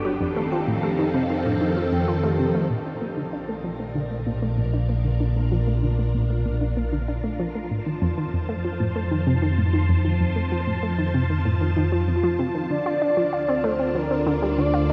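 Ambient, sequencer-driven space music in Bb major at 96 BPM, luminous and expansive, cut from a longer piece and bathed in a huge ambient reverb. A swirling, vintage phased string machine sits up front with sustained chords that fade in from 2.7 seconds, over an evolving analog drone bass and a round, nasal analog pluck riff with tape echo, while a mellow, ringing vibraphone with soft mallets plays background arpeggios until 2.5 seconds. At 12.7 seconds a smooth, expressive synth lead with vibrato enters with the melody as the harmony moves to Dm.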